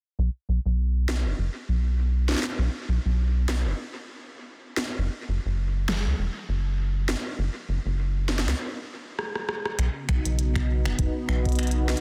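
Dry, dense and heavily limited, this intricate, glitchy IDM excerpt in B major moves at 100 BPM with a light 16th-note swing, driven by an up-front, rubbery, hollow square-wave bass with a resonant filter pluck and a moving notch, while a tape-echoed kit of finger snaps, clicky hi-hats, rim clicks and a tiny snare plays further back, then after a stop at 8.6 seconds and a short drum fill, a smooth, detuned sawtooth pad with chorus arrives at 9.8 seconds and a deep, tape-warm electronic kick joins in the background at 10.1 seconds.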